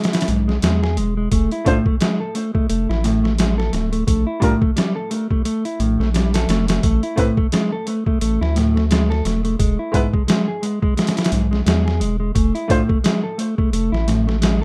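A gritty, pitched-down sampler-style drum kit anchors this smoky, cinematic trip hop excerpt, its thumpy kick, medium-tuned snare and hi-hat compressed and up front, with a swung sixteenth-note feel. Beneath it, a round analog bass enters at 0.3 seconds, deep and nasal, with a fast attack and sustained notes. A dark, clean electric guitar, fingered rather than picked, plays arpeggios from the start, softened by a low-pass filter and tape echo. At 1.6 seconds a clear, woody upright piano joins as accompaniment, treated with tremolo, filtering and tape echo, before it drops out at 12.8 seconds. The harmony moves from E through F6, Bb5 and A5, returns to E and settles on F, and the whole excerpt sits in a rough home-demo mix with light reverb.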